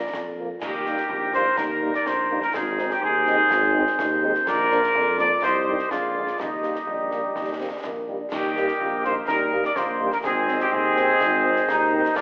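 A mellow, vintage-toned trumpet section sits up front with the melody from the opening moment, joined at once by a warm woodwind section on a second line and a mellow tuba carrying the bass with light vibrato, in this rousing, spirited military-style march for wind band at 125 BPM in 2/4, set in Eb major. Concert snare drum, concert bass drum and clash cymbals with dark cymbals drive the straight feel from a small room, while a dark French horn section supplies accompaniment in the background. At 6.9 seconds a warm euphonium with vibrato briefly adds its own second line, and from 8.8 seconds a tight trombone section brings sustained chords as the opening section repeats. The harmony moves around Eb, Ab, Bb and C minor. The sound has a telephone-like, narrowed quality set against a wet scoring stage reverb, with the woodwinds, horns, euphonium and tuba placed distant and roomy, and the passage is cut from a longer piece.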